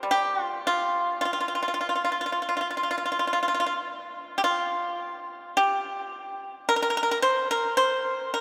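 A solo pipa carries this short piece of Chinese traditional music, its bright, percussive tone plucked with fingerpicks and placed up front. Cut from a longer work, the 8.4-second fragment moves in a free, rubato manner around a slow pulse of 54 BPM in 4/4. The pipa ranges from Bb2 up to C5, and its close, dry attack gives each note a crisp edge. Around it, a cathedral-like reverb with a long 4.3-second decay fills the space of a church or concert hall. The mood is elegant and full of longing.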